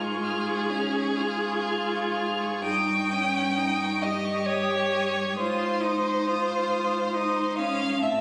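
Serene and tender, this slow romantic classical movement for string quartet in Ab major drifts in rubato 3/4 at around 56-69 BPM, with a distant, rich-toned first violin singing the high melody with vibrato and expressive portamento, an up-front second violin carrying a warm, focused inner line, a focused, smooth-topped viola, and a warm cello bass, all bowed with vibrato and heard through a phone recording in a reverberant club-like room over a Db/Ab to Eb7/G to Ab progression in this short cut from a longer piece.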